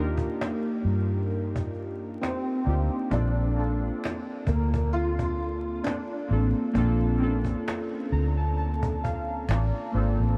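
Lo-fi hip hop at a relaxed 66 BPM in Bb major, this nostalgic, dreamy clip from a longer piece sets warbling, detuned synth keys with chorus and phaser over a dark, round, foam-muted electric bass and a woody, band-limited cajon with 12-bit sampler grit, while a felt-muted upright piano carries a soft, intimate melody with audible action noise from 2.2 to 6.5 seconds, a very quiet finger snap enters at 4.0 seconds, and the synth keys play a fill from 7.7 seconds, all under light reverb and vinyl crackle.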